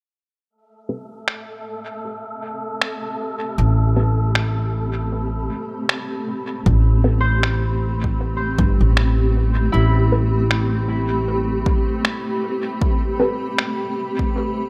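Meditative and deep, this ambient dub excerpt opens on a dark, filtered chord stab run through phaser and dub echo, with a filter sweep over its first half, joined by breathy, wind-like tuned noise, muffled, pitched-down electronic finger snaps trailing dub echo and a blurred, evolving granular cloud pad. A woody upright bass sits up front from 3.6 s, and at 6.7 s a punchy, overdriven electronic kick drum arrives as the noise texture falls away. A ringing, fingerpicked Celtic harp then adds low-passed arpeggios with its own echo and filter sweep, all under a light reverb.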